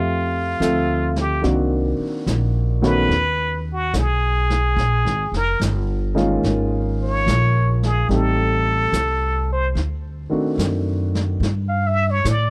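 This short excerpt of a tender, intimate jazz ballad opens with a plunger-muted trumpet, baby grand piano and upright bass together, swinging gently at 72 BPM in 4/4. The trumpet carries the melody as a solo throughout, its brilliant, punchy, vintage tone shaped by the plunger's wah-wah and a vibrato, with a slapback echo giving its forceful phrases a short repeat. Beneath it, the piano sits up front with a natural sound, voicing a progression that moves from Fmaj9 through Cm7b5, B and Bbm7 to Am7b5 and D7b9, and the piano stops at 11.4 seconds as the harmony reaches Gsus2. The pizzicato upright bass is woody and thumpy on steel strings, anchoring the low end close to the listener. A brush kit enters at 0.6 seconds, sitting distant and roomy with a medium-tuned snare, hi-hat and a rolled-off top, while a small room ambience wraps the whole ensemble.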